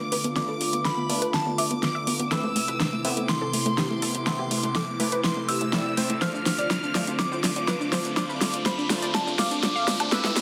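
A dense, heavily limited modern master with a moderate digital room sheen carries this bittersweet, dreamy progressive house build-up, cut from a longer piece, where an overdriven deep house kit sits up front with a fat snare, metallic hats, shaker and woodblock under a drum fill, while a very quiet, saturated sequencer bass drives underneath. A crystalline, warbling FM bell carries the melody with chorus, tremolo and delay, shadowed in the background by a clear, focused studio violin section, as an airy, breathy pad holds sustained chords beneath. A round, vintage analog pluck arpeggio and punchy detuned supersaw stabs both ride filter sweeps, a faint glassy-harmonics texture drifts overhead, and an electronic riser enters at 2.1 seconds to lift the build.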